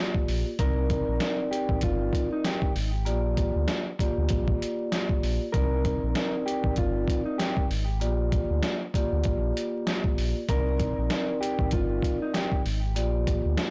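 A muffled, pitched-down sampler drum kit anchors this dark, tough boom-bap hip-hop cut. Its thumpy kick, medium-tuned snare and hi-hat are compressed, overdriven and up front, sounding re-recorded in a small room, with a swung feel. A deep, full sine sub bass with an added octave enters at 0.3 seconds, its fast attack and sustained notes thickened by transformer saturation. Soft-mallet vibraphone, metallic and ringing with the motor off, carries the accompaniment from the start through cassette-tape coloring, filtering and plate reverb, moving between Gm7/Bb and Cm9. A clean, fingered electric guitar plays the melody in a dark tone from 0.6 to 12.6 seconds, dressed in subtle chorus, filtering, plate reverb and digital delay. The overall recording is blown-out and overdriven, with vinyl crackle and light reverb, and the passage is cut from a longer piece.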